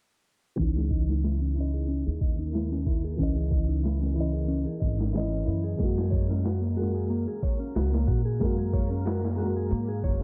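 A woody, pizzicato upright bass sits up front in this brooding, smoky trip hop excerpt, its steel strings giving a thumpy, dark low end. Alongside it, a boom bap sampler-style drum kit plays hi-hat, kick and a high-tuned snare, sounding pitched down, compressed and gritty, with overdrive and the air of a large room. A felt-muted upright piano supplies soft, boxy accompaniment with audible action noise, colored by harmonic tremolo, tape echo and a filter sweep. A clean, fingered electric guitar plays arpeggios with vintage 12-bit sampler grit, tape echo and its own filter sweep. From 2.4 s a reversed, detuned swelling texture drifts in the background, granular and dreamy with its own reverb. The harmony moves from C#madd9 to F#add9 at 5.8 s, and the whole mix feels dry and close under a low-pass filter.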